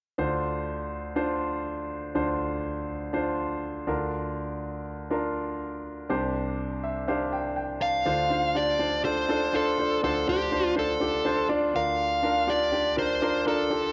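Dark, reverb-soaked studio production frames this bittersweet, earnest slice of piano-driven pop, where a clear, polished concert grand with deep bass carries the accompaniment through Dm7, Bb/D and Csus2 chords and adds a fill from 6.6 to 8.1 seconds, joined at 7.8 seconds by an up-front, smooth, overdriven electric lead guitar carrying the melody.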